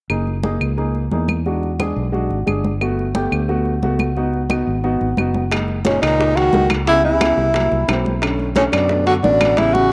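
A sunny, sophisticated stretch of Afro-Cuban jazz in straight 4/4 at 177 BPM opens at 0.1 seconds with a dark, mellow baby grand piano comping up front over a growly fingered electric bass, while woody, close and dry claves tick along and bright, damped congas sit in the background. The harmony moves from an F#6/9 through E7, Gmaj7 and C#9sus4. At 5.5 seconds the groove thickens as tight, high-tuned bongos enter very quietly alongside ringing metal-shell timbales in a live room, and the F#6/9 returns before the chords shift through C#m7b5 and C7#11 to Bm9. At 5.9 seconds a breathy tenor saxophone takes the lead, its subtone sound carrying light vibrato and scooped notes in a jazz style, while a clear baritone saxophone with its own vibrato adds a close-miked second line lower in the mix. A moderate spring reverb lends the recording a gentle bloom, and a short drum fill closes this clip cut from a longer piece.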